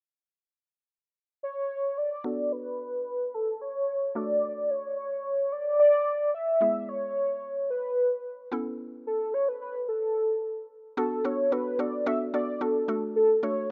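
This dance-pop fragment, cut from a longer piece, moves at a driving 110 BPM in straight 4/4 with a bittersweet cast in B dorian. A velvety synth lead carries the melody from 1.4 seconds, its detuned sawtooth unison sitting up front with chorus, vibrato, a low-pass filter and tape echo. At 2.2 seconds a mallet-like synth pluck joins as accompaniment, woody and round with an FM character, a noise layer and a warbling vintage quality under its own chorus and low-pass filter. A filter sweep runs through the middle stretch as the harmony cycles through Bm7, D, E and Aadd9 before returning to Bm7 and D. The sound is a rough home demo mix with light reverb, and both parts play on until the cut at 13.7 seconds.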